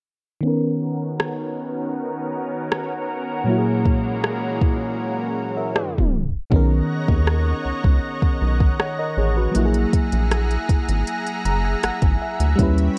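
A mellow, round FM electric piano opens at 0.4 s under a filter sweep, soon joined by a lush, detuned sawtooth pad with sidechain pumping and an up-front electronic kit of soft kick, smooth hats and rim clicks, setting a romantic, dreamy contemporary R&B groove at 79 BPM in B major over Bmaj9 and F#9 chords, until a tape stop gives way at 6.5 s to a rubbery, bouncy square bass and, at 11.1 s, an electric piano fill, the whole excerpt bathed in light reverb and the warbly pitch drift of worn cassette tape.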